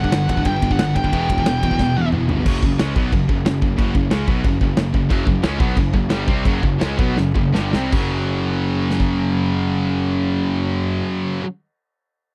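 A dry, close 1970s-style studio sound frames this dark, relentless heavy metal excerpt, where a punchy acoustic drum kit with bright cymbals and a medium-tuned snare sits up front and plays fills, a growly fuzz bass churns beneath three distorted, picked high-gain guitars riffing in the background (one double-tracked and scooped), a slapback-echoed lead guitar voices a brief melody over the opening 2.1 seconds, the music slows from 5.1 seconds, and the drums stop at 9.1 seconds.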